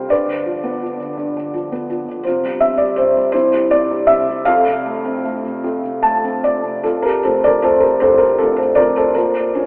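Classical solo piano in a lyrical, tender and peaceful mood, this brief excerpt cut from a longer piece moves at a slow 50-56 BPM in 6/8, counted in dotted quarters, with a flexible rubato feel in F major, tuned to A4 = 442 Hz. A felt-muted upright piano plays alone throughout, spanning C2 to A5, its tone soft, dark and intimate, with thick felt dulling the hammers and audible action noise close up front. The harmony drifts from G7 through Csus4 and C to a settled F, then turns to an unexpected Bb minor near the end at 9.2 seconds. A short piano fill from 5.6 to 6.8 seconds bridges the opening section into a new passage that carries on until 9.7 seconds. The instrument sits in a wet cathedral reverb with a long 5.3-second decay, as if in a church or concert hall, yet the whole is heard through a telephone-like sound.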